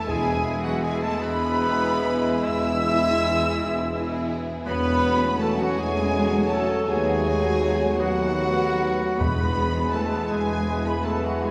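This tender, serene classical excerpt from a slow romantic orchestral movement sways in a rubato 12/8 as a rich, vibrato-laden violin section carries the melody, joined by an airy, distant flute ensemble, while a second violin line, a clarinet, a roomy oboe and a mellow bassoon fill in supporting lines from the background. Very quiet violas add accompaniment as very quiet French horns and trombones hold sustained chords beneath clear trumpet stabs, and cellos, double basses and a smooth-topped tuba anchor the bass. Soft-malleted timpani, round and dry, enter at 0.1 s and return at 9.2 s, all set back in a lush scoring-stage reverb.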